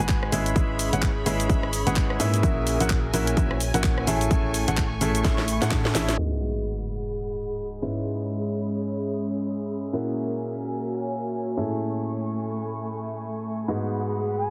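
A clear, woody upright piano riff leads this soulful, bittersweet piano house excerpt in G# minor at 128 BPM, its notes pumping against the beat with dub echo trailing behind, over dark bowed chamber strings and a warbly, nostalgic tape-like pad in the background. For the first 6.2 seconds a punchy electronic kick, a house kit with cracking snare, handclaps, hi-hat, rim click and shaker, and a round FM bass drive the groove. Then a drum fill, a band accent and an up-front sub drop usher in a filtered second half where piano, strings and pad carry on as the sub drop fades, before a breathy silver flute enters at 14.4 seconds, all set in a heavily compressed, radio-like sound with a moderate digital room reverb.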